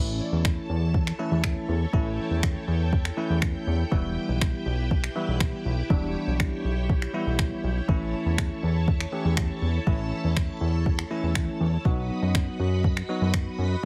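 Bittersweet and driving, this dance-pop excerpt sets a bright, bell-like tine electric piano and a lush, slow-attack string machine with ensemble chorus over a fat, detuned analog bass with ring modulation and a filter sweep, all three pumping with sidechain, while a soft-kicked, tape-warm electronic R&B kit of finger snaps and kick enters at 0.4 seconds, up front in a heavily compressed, radio-style mix with light reverb.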